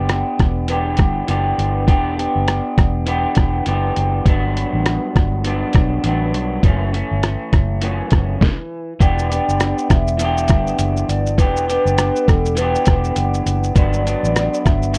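Muffled, pitched-down sampler-style drums with a thumpy kick and fat snare sit up front in this lonely, wistful bedroom-pop excerpt at 101 BPM in E dorian, over a slightly broken-up electric guitar through a small old amp with analog chorus and vibrato, a round, foam-muted fingered bass, and, from 9.0 s, a hollow, woody clarinet-like synth lead with lush chorus, all in a dark, lightly reverberant mix moving through Em7, Gmaj7 and F#m7.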